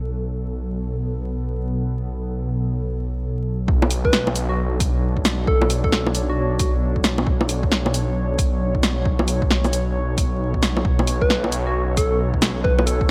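The detuned saw bass stands out first, a menacing, saturated low drone on B1 that pumps against the beat from the opening second and stays up front throughout this future garage passage in B minor at 134 BPM with a 16th-note swing. Beside it, a warbling, nostalgic pad sustains mellow chords with chorus and its own reverb, moving from F#m/B to Bm7 at 3.7 seconds and back near the close, all under a rainy, wistful haze of vinyl crackle and light reverb. A punchy, layered electronic kick arrives at 3.7 seconds, joined by a deep house kit of bongos, shaker, muffled hi-hats and a fat, forward snare, its percussion darkened by low-pass filtering and set in studio reverb. A round, keys-like FM lead with a vintage, decaying tone traces a short phrase between F#4 and B4 from 4.0 seconds, colored by chorus, tremolo, cassette wear and dub echo, then returns at 11.2 seconds. The passage is cut from a longer piece.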